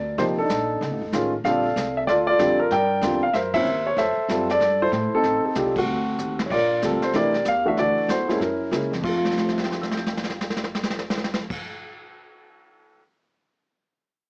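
Heard through worn, warbling old cassette tape with pitch drift, a small-speaker sound and light reverb, this sophisticated swinging jazz piano trio excerpt in F major moves at a brisk 190 BPM, with an up-front, warm grand piano carrying the melody over rich altered chords, a woody, thumpy pizzicato upright bass on gut strings, and a dark, smooth brush kit with dark cymbals, a medium-tuned snare and a boomy kick that joins with the band on accents at 3.5 and 5.7 seconds before a drum fill from 9.2 seconds as the harmony settles on Fmaj7.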